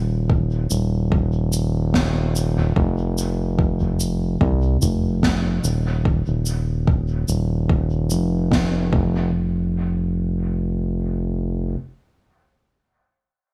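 Ambient dub with a spacious, meditative mood, this excerpt from a longer piece moves in 4/4 with a gentle swing on the sixteenths. A round analog bass sits up front from the opening moment, its mellow, evolving tone blending sawtooth and sine colours with a touch of ring modulation, holding sustained low notes with a fast attack. An electronic kick drum enters at 0.3 seconds, deep and layered, with the character of being re-recorded in a small room. A soft-mallet drum kit follows shortly after, sitting lower in the mix with cabasa, a medium-tuned snare and toms that sound natural and hall-like, trailed by dub echo. The drums drop away before the music shifts into a new section at 9.3 seconds, leaving the bass to carry on through a dry, close studio ambience.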